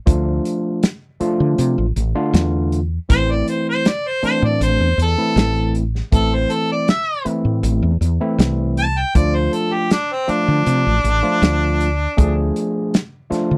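Dry and close, this mournful, soulful straight-eighth soul blues excerpt at 79 BPM sets a gritty, barky overdriven tine electric piano with subtle chorus over a round, woody fretless electric bass and a tight, rolled-off soul drum kit of hi-hat, kick and snare, while an overdriven harmonica with vibrato and a soft attack enters at 3.1 seconds to carry a roomy, jazz-style solo over chords moving from Dm to Am and back to Dm.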